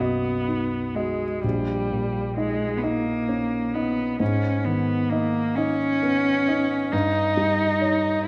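Classical and yearning, this slow, solemn romantic movement for piano trio moves in a rubato 6/8 at 44 BPM in G# minor, with a rich, focused cello singing a bowed second line with vibrato and a smooth top alongside a dark, mellow grand piano accompaniment, both up front in a moderate concert hall reverb across the 8.3-second fragment cut from a longer piece.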